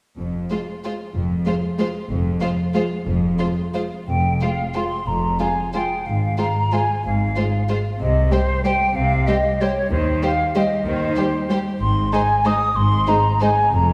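Low cellos and double basses open this bittersweet, sweeping classical excerpt in F minor, joined at 0.5 seconds by bowed sul tasto strings, a floating high violin line over dark, woody violas and second violins, all moving in a rubato 3/4 at 168-207 BPM through a church-like reverb before an airy, expressive flute enters up front at 4.1 seconds.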